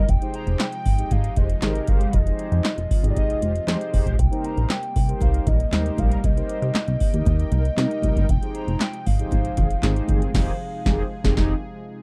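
Early-eighties boogie funk at 117 BPM in F minor, slick and funky, where a hollow, woody clarinet-like synth lead carries the melody through chorus, phaser and slapback echo over two mellow, brassy synth brass parts, a detuned analog pad with tremolo, a plucky, dark sawtooth bass and an up-front electro drum machine with a deep kick, punchy snare and metallic hats, while very quiet high-tuned congas join from 4.7 to 10.2 seconds, the chords move from Fm9 to Cm7 and back, and a band accent lands at 10.3 seconds in this dry, close studio sound.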